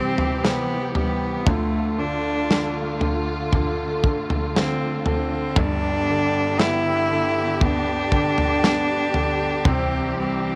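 Pop ballad excerpt at 59 BPM, emotional and hopeful, where an intense, up-front bowed solo cello carries the melody with vibrato over a smooth, vintage-toned concert grand piano with deep bass, a lush string section adding expressive sustained chords with portamento, and a modern acoustic drum kit of tight kick, medium-tuned snare and toms entering at 0.2 seconds, all moving through C, Dm and G in light reverb.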